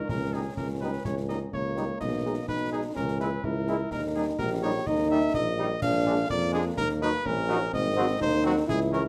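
The excerpt opens with a solo cornet carrying the melody over a mellow euphonium second line, with a tuba bass entering a moment later, in this stern, resolute military-style march for wind band in G# minor, taken at 126 BPM in a straight 2/4. The cornet sits up front with a warm, classical tone, while the close-miked euphonium adds vibrato beneath it and the tuba, also up front yet distant and roomy, anchors the low end with light vibrato. Concert snare drum, concert bass drum and clash cymbals keep the march going close and dry, the cymbals dark in colour. At 0.3 seconds a tight French horn section joins with very quiet, mellow accompaniment, alongside a trombone section holding sustained chords with a smooth top. The harmony moves through dominant-flavoured chords toward D# minor before turning to G#7, all in a moderate large-studio reverb with a faint mains hum beneath the band.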